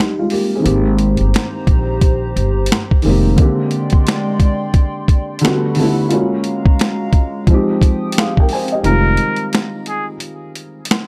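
Dry, gritty hardware sound frames this hazy, melancholic lo-fi hip hop excerpt, where a compressed, pitched-down boom bap kit with a thumpy kick, finger snaps, hi-hat and a high-tuned snare runs throughout beside a boxy felt-muted upright piano with audible action noise, a hollow, flute-like pad sits low in the mix from 1.1 to 8.8 seconds, a woody pizzicato upright bass on gut strings appears in two brief spots, and a nasal, breathy trumpet with straight mute and vibrato enters at 8.9 seconds for a short jazz-style solo.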